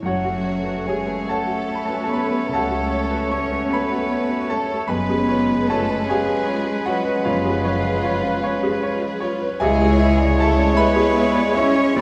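A lush, passionate romantic movement for piano and orchestra in F# minor, cut from a longer piece, unfolds in a rubato 12/8 at 50 BPM: a clear, up-front concert grand with deep bass carries the melody over F#m, C#7/F# and C#m, joined on the melody by a lush violin section. A bright oboe, a hollow silver flute, a rich, very quiet second violin section and a distant, roomy clarinet weave second lines. A focused viola section and a bassoon supply accompaniment, while cello and soft-attack double bass sections anchor the bass. A tight, warm French horn section holds sustained chords, a mellow trumpet adds stabs, and the ensemble sits in a wet recital hall.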